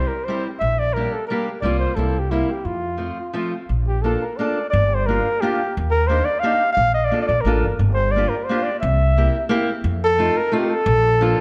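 This musette waltz in 3/4 carries a nostalgic, charming mood, with a lilting swing and a touch of rubato. A close-miked flugelhorn takes the solo melody up front, its jazz-style phrasing shaded with vibrato and a tape echo. A fingerpicked steel-string acoustic guitar supplies dark, concert-style accompaniment, while a pizzicato upright bass adds a woody foundation, both also sitting forward in the mix. About 3.7 seconds in, the music moves to a new key, and the harmony passes through major-seventh and minor-seventh chords before settling on a dominant-seventh turn and a final resolution. A moderate recital-hall reverb gives the whole excerpt a dark, mellow glow.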